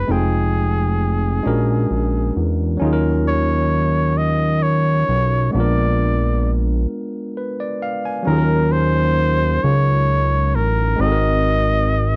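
A clear flugelhorn melody leads this short passage from a longer piece, played with vibrato in a pop style and carrying a slapback echo. It sits up front over a barky, bright tine electric piano that supplies clean, direct chords, while a fat analog bass holds the bottom with a thick, saturated, sustained tone. The feel is a slow, late-night R&B groove in six-eight, yearning and unhurried, moving through rich minor ninth and altered dominant harmonies. A break arrives at 6.9 seconds, and at 8.3 seconds a new section begins that settles on a minor ninth chord before turning toward a dominant seventh. The sound is dry and close, like a 1970s studio with little reverb.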